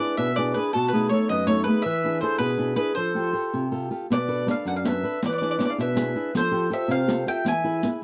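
A dry, close recording with small-room ambience and a 1970s studio character frames this wistful, romantic Italian folk serenade in 6/8, played with rubato and cut from a longer piece. A bright, woody mandolin on double strings carries the melody up front, a mellow clarinet in classical style sings a second line, and a dusky, fingerpicked flamenco guitar accompanies close by, finger squeaks audible, as the harmony moves through E7, B7, Fadd9 and Bm7. At 4.1 s a vintage, band-limited riq enters with soft hands and dark jingles, and the passage comes to rest on E at 7.4 s.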